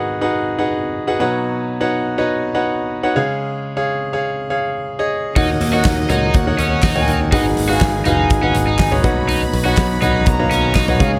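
Dramatic and earnest, this piano-driven pop fragment opens on a clear, up-front concert grand alone over Abm7, Badd9 and Db before, at 5.4 seconds, a huge arena kit with a fat snare, punchy kick and handclaps, a growly picked electric bass, an overdriven stack guitar riff and a floating, soft-attack violin section touched with tape echo all join in, set in light reverb and small room ambience.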